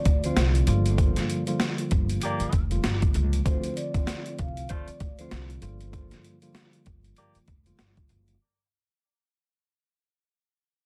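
A pitched-down, compressed boom-bap drum kit with a thumpy kick and high-tuned snare sits up front in this gritty, moody hip-hop fragment, joined by a woody pizzicato upright bass, a mellow tine electric piano, a soft-mallet vibraphone melody with tape echo that rings until 5.3 seconds, and clear saxophone section stabs from 2.2 seconds, moving between Dm7 and Gm7 in a dry, dense master with vinyl crackle that fades out throughout.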